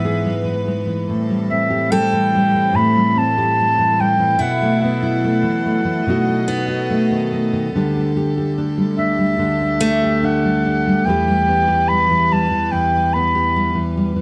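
In a straight 4/4, this reflective, heartbroken acoustic folk-pop ballad, cut from a longer piece, places a breathy, whispered clarinet melody with light vibrato and scooped notes up front over a full-bodied, fingerpicked nylon-string guitar with audible finger squeak, a bright, boxy parlour steel-string guitar picking arpeggios until 11.4 s, and a distant, earthy chamber string section holding bowed chords, heard through close, detailed microphones within a moderate large studio reverb.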